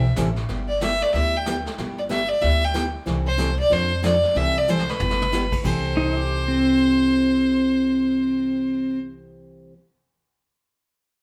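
A live band plays together in one room, and a wet studio reverb gives this short, cut-off western swing fragment a roomy glow. Its swung eighths keep the mood playful and cheerful. A clear, biting fiddle carries the melody up front with light vibrato, while a bright, full-bodied picked acoustic guitar fills in the accompaniment and a woody, thumpy upright bass plucks out the low end on gut strings. A vintage brush kit sits behind them with dark cymbals and a punchy kick, and it drops out at 5.7 seconds after a fill around 4.7 seconds. At 6.0 seconds a warm, clean, compressed pedal steel guitar steps forward with a second line, its slide and volume swells adding a lift over the chords as the passage moves into its next section.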